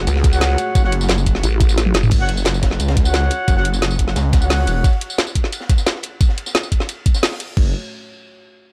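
Dark technical drum and bass with a futuristic mood opens on a drop: a snarling, detuned saw bass growls up front beside a nasal, vowel-sweeping wobble bass, while a deep, wave-folded analog pad sits in the background, the pad and saw bass both pumping from the sidechain. A knocking electronic kick and a layered kit with a woody snare and metallic hats drive things up front, a gritty breakbeat kit with dark cymbals and a high-tuned snare crunches behind them, and a mellow brass section adds smooth stabs through dub echo until 4.9 seconds. After a drum fill at 1.8 seconds the wobble bass and pad fall away, and the saw bass snarls on beside the brass until 4.8 seconds as the drums continue in a small room ambience.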